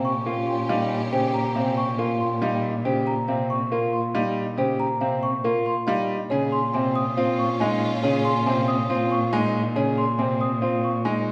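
A wet scoring-stage reverb gives this short cut from a longer classical piece a spacious, resonant sound. It is minimalist pattern music in a straight 4/4 pulse, with a mood that feels urgent yet meditative as the harmony moves from Bbm69 to Dbadd9/Bb at 6.3 seconds. A slightly broken-up electric guitar, dark and fingered, and a large celesta with a bell-like, ringing tone both play arpeggios. A brilliant grand piano with long sustain adds low accompaniment, while a single up-front cello holds a rich, expressive bass note on Bb2. A rustic, woody folk marimba played with soft mallets carries the melody from the background. A lush, focused string section bowed close with vibrato sustains chords in two passages, the second beginning at 6.3 seconds and ending at 9.5 seconds.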